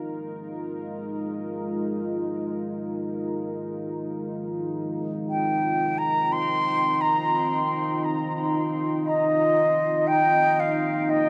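An airy, mellow concert flute carries the melody from 5.3 seconds, its straight tone and soft attack sitting up front yet sounding distant, with a dub echo trailing its phrases. Beneath it, a deep, moody ambient pad holds sustained chords throughout, built from detuned sawtooth and sine layers in unison with a sub octave, slow attack and long release, thickened by chorus and its own reverb. The pad fades in across the whole passage, shifting from Bb7sus4 to Cm7 and back to Bb7sus4 in C minor. This is ambient music in free time, spacious and deep in mood. A huge, wet reverb with a 4.8-second tail wraps the dark, warm production, and the recording is cut from a longer piece.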